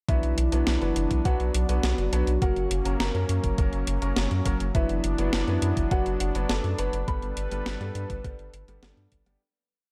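A short, nostalgic, nocturnal synthwave piece opens at 0.1 seconds with its whole band sounding at once: a thumpy, tape-warm electronic kick and a clean 12-bit drum machine, dressed in gated reverb, playing an 80s-style backbeat of closed hi-hat and a medium-tuned snare. Beneath them, a round, deep analog bass runs a sequenced sixteenth-note line and sits up front. A brassy, warbling sawtooth pad holds sustained chords with chorus, vibrato and sidechain pumping, while a clear, somewhat boxy baby grand piano adds dotted-rhythm chord stabs through a delay. The melody comes from a full, dark octave-layered synth lead shaped with chorus, phaser and delay, doubled an octave higher in the background by a pure, gentle FM bell. The harmony moves through Bm, F#, Bm/F# and Gadd9 in a dry room, and the piece fades out from 6.3 to 9.4 seconds.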